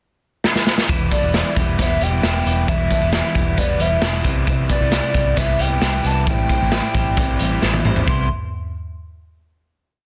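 Nostalgic and bright, this short jangly indie pop piece moves at 134 BPM in a straight 4/4, set in C major. A raw garage drum kit opens with a fill at 0.4 seconds, sitting up front with a punchy kick, a medium-tuned snare and a gritty, saturated small-room sound with a rolled-off top, driving a brisk indie backbeat. From 0.9 seconds a crunchy overdriven guitar strums open chord shapes, while a clean, twangy twelve-string electric guitar plays a fingerpicked roll pattern through analog delay, tucked in the background. A dark, foam-muted fingered bass with a round, amped tone drives steady eighth notes beneath them. A hollow, woody clarinet-like synth lead enters at 1.1 seconds with soft, sustained motif-based phrases, colored by chorus and vibrato. The harmony moves from Em to Cmaj7 and Am7, and after a second drum fill the piece settles on a final Cmaj7 chord at 8.1 seconds, all in a dry, dense and heavily limited modern mix.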